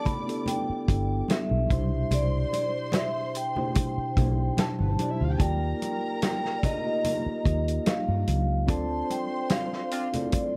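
Warm and smooth, this short passage of lush 1970s-style soul moves at an unhurried 73 BPM in 4/4, with a light swing on the sixteenths. A metallic, ringing vibraphone played with medium mallets carries the melody, colored by slow motor vibrato and an analog delay. Beneath it, a dark, woody violin section bowed with vibrato sings a second line, while a clean, mellow tine electric piano supplies the accompaniment over chords moving from G6 through Cmaj7 and Ebmaj7 to Dm7. An up-front, dry drum kit with a punchy kick and medium-tuned snare anchors the groove, soft-handed congas ring distantly in the background, and a round, foam-muted electric bass enters at 0.7 seconds. The band hits an accent from 8.7 seconds, and a tight, jazz-style horn section adds a brief stab at 9.9 seconds, all set in a small room reverb.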